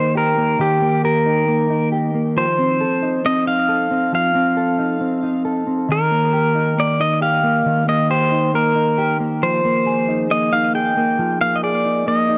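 A dry, gritty recording with light reverb frames this short, dreamy dream pop passage, cut from a longer piece, that floats over chords moving from Eb to F7 and settling on Bb7sus4 at 9.4 seconds. Up front, a warm, compressed pedal steel guitar carries the melody with fingerpicks, slide and volume swells, trailed by tape echo. Beneath it, a dark, clean electric guitar plays fingered arpeggios coloured by subtle chorus and tape echo, both parts sounding throughout.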